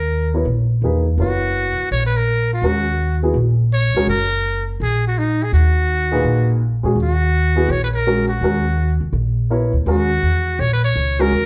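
Hypnotic and cool, this modal jazz excerpt in Eb phrygian swings at 166 BPM over a single Ebm7 chord, with a buzzy, breathy metal-muted trumpet carrying the melody up front with light vibrato and scooped notes, a woody pizzicato upright bass close and present beneath it, and a warm baby grand piano accompanying, all set in a club reverb heard from further back in the room.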